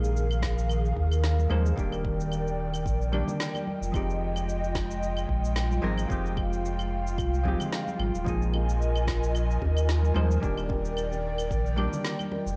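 A smooth, wistful sunset chillout excerpt at 111 BPM opens with a dark, clean hollow-body jazz guitar played with the fingers, an airy, breathy pad with chorus and 12-bit sampler grit, a round, up-front sub bass with tube saturation, and electronic cabasa, claves and a woody snare. A deep electronic kick joins in the background at 0.4 seconds, and bright acoustic congas and bongos follow at 1.4 seconds, all over a lightly swung 16th-note feel. The chords move from Bb7sus4 through Ebmaj7 and Fm9, and the home cassette recording gives the guitar, pad and drums a tape-worn haze, with tape echo on the guitar and light digital ambience around the mix.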